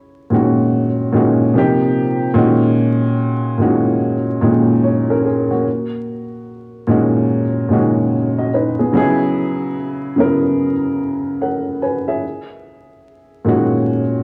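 A dark, woody upright piano plays solo from the very start, sitting up front with audible action noise and a short sustain, its tone softened by a low-pass filter and cassette tape. This hazy, nostalgic hip hop fragment moves at 73 BPM in 4/4 with a swung sixteenth-note feel, drifting from F#add9 through D#69 and a rootless Bmaj13/A# to C#m7 before returning to F#add9 at 12.2 seconds. The sound has the intimacy of a home cassette recording, with vinyl crackle and a light, small-room reverb.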